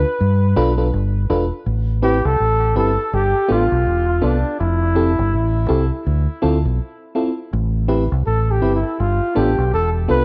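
A breathy, mellow flugelhorn with vibrato, scooped notes and tape echo takes a jazz-style solo from 1.7 s in this longing, bittersweet lovers rock reggae fragment in A minor at 82 BPM with a swung sixteenth feel, carried by a deep, round, up-front dub bass and a soft FM electric piano with chorus that enters at 0.6 s, all inside a small room's echo-chamber ambience over chords moving from G7 into Am7, then through G7, Fmaj7 and Dm7.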